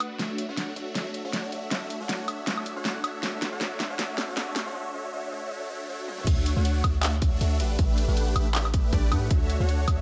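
Huge, bright, detuned supersaw chords with a phaser and sidechain pumping open this playful, lush future bass passage, joined from the start by a deep, boomy 808-style bass and an up-front pop drum kit with a fat snare, hi-hat, handclaps, toms, woodblock and crash, building over a swung half-time feel through drum fills and Dmaj9 to Asus4 changes into a break at 4.8 seconds before a punchy electronic kick arrives for the drop at 6.3 seconds, in a lightly reverberant space.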